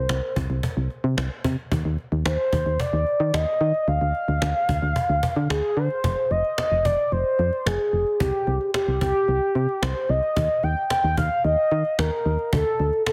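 Nocturnal and cool, this synth-pop excerpt in C minor moves at 111 BPM in a straight 4/4, drifting from Cmadd9/Eb and Dm toward Fm and bare power chords after the 6.0-second mark. A mellow, horn-like lead with a vintage, warbling sawtooth tone, soft attack, vibrato, chorus and delay carries the melody up front. Beneath it a punchy, round, dark FM bass with a fast attack and decaying notes and a woody cajon played with hard hands sit inside light reverb and a heavily compressed, radio-style sound.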